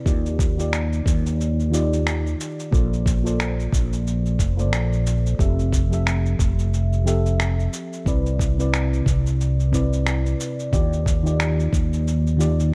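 A soft, full-bodied FM electric piano opens this smooth sunset chillout piece, its chords coloured by chorus, phaser, a cassette-tape haze and digital delay as they move through lush major-ninth harmonies. A round, punchy fretless bass with lush chorus sits up front beneath it, joined by a gritty, overdriven cabasa and finger snaps and a thumpy, compressed kick that drops out at 11.9 s. The mix is dark and warm, with light reverb and a lazy swung feel.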